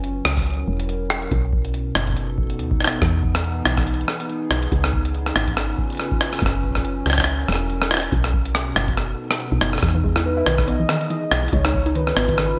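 A gritty, pitched-up jungle sampler-style drum kit with gated reverb and digital delay drives this playful, wistful IDM excerpt in E major at 141 BPM with a light 16th-note swing, over a woody FM bass, a deep electronic kick that drops out from 9.0 to 9.8 seconds, and a warbling, lo-fi tape-like pad holding chords, before a dusty pluck's arpeggios, a very quiet pulsing gated texture and a velvety, chorused synth lead with 12-bit sampler grit arrive near 10 seconds, all set in a bright 1980s-style digital production with a moderate plate reverb.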